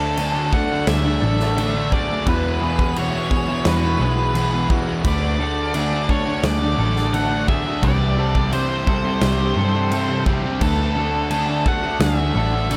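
A small room sound gives this shoegaze and dream pop rock passage a snug, blended haze, cut from a longer piece and moving at 86 BPM in a straight 4/4 with a wistful, blissful mood. Up front, a dark octave-fuzz lead guitar carries the melody through distortion and analog delay, anchored by a round, foam-muted vintage electric bass and a big acoustic rock kit with a punchy kick, medium-tuned snare and bright crashes that enters at 0.2 seconds. Behind them sit three riffing guitars: a bright, double-tracked overdriven semi-hollow, a warm raw garage guitar with overdrive and reverse reverb, and a thick, murky fuzz guitar soaked in lush chorus. A twangy, lo-fi electric guitar through a small old amp picks slightly broken-up arpeggios with subtle chorus and analog delay. An icy, crystalline glass pad with a slow attack and long release holds airy sustained chords in the background, shimmering with chorus and its own reverb. 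The harmony drifts from D to Eadd9, back to D, on to Cadd9 and home to D by 10.6 seconds.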